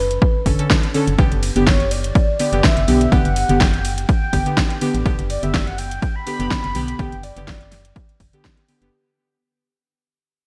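Smooth and warm, this deep house excerpt is cut from a longer piece and moves with a lightly swung groove in four, set within a drop that fades out from 3.8 seconds. A bell-like FM electric piano sparkles with a vintage warble on a single high note at the very start, soaked in chorus and delay, before deep, full-bodied chord stabs take over from 0.5 seconds, detuned and dark with a filter sweep, chorus and sidechain pumping, moving from Bm9 to G. Underneath, a hollow, organ-like FM bass sits low with a fast, decaying attack, tube saturation and pumping of its own. A dry, punchy electronic kick drives up front with overdrive, while the layered drum kit adds a fat snare, metallic hi-hats and ride cymbal, roughened by overdrive and gated reverb. From 1.7 seconds a round, horn-like synth lead floats above with a soft attack, sustained notes, vibrato and lush chorus and delay. The whole mix has light reverb and a bright, 1980s-style digital sheen.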